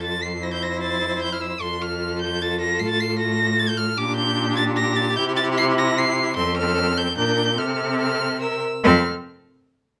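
A spirited, cheerful classical-period movement for string quartet opens at a quick 150 BPM in 3/4, in F major, with all four bowed players sounding together from the start. The first violin carries the melody high and up front with a rich, focused vibrato, while the second violin and viola fill out the middle with smooth-topped inner lines and the cello anchors the bass with a smooth, even tone. A moderate studio reverb adds a light sense of space to this short cut from a longer piece, whose harmony settles back onto F at 8.8 seconds.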